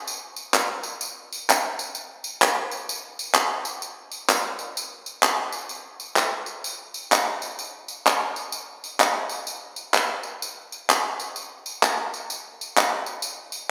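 Reverent yet jubilant, this short cut from a longer gospel piece moves at 128 BPM in 4/4 with a swung eighth-note feel. The only part is tambourine and handclaps, playing from 0.1 to 13.6 seconds, with maracas and a group handclap sitting up front in an acoustic, live-room sound. The first section gives way to a second at 5.7 seconds. A lush hall reverb with a 2.2-second tail soaks the mix, lending the percussion a dreamy glow.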